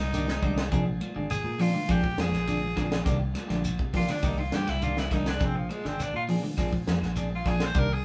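Captured as a band playing live in one room with moderate studio reverb, this funky, hypnotic afrobeat excerpt at 102 BPM in Bb mixolydian features a raspy, gritty tenor saxophone soloing forcefully with light vibrato over Cm9 and Bb9 chords, backed by a round, dark, foam-muted fingered bass, an up-front tight funk kit with a high-tuned snare, picked arpeggios from a slightly broken-up guitar, clean stabs from a semi-hollow guitar, a grainy shekere in the background, and distant, very quiet ringing congas and woody claves.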